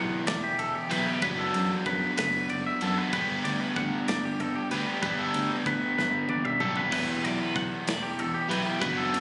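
A faint, twangy twelve-string guitar is heard only for the first 1.2 seconds, beneath twangy, clean electric guitar arpeggios, a crunchy, double-tracked overdriven riff up front and a dark, round fingered bass, with an acoustic drum kit of tight kick, medium-tuned snare and bright cymbals arriving at 0.3 seconds. This wistful, playful math rock and midwest emo fragment moves in a straight 6/8 at 63 BPM through Em7, Bm7/F# and G, with a drum fill at 6.0 seconds leading back to Em7. It sounds captured on a phone in the room with club reverb, compressed and dull at the top end.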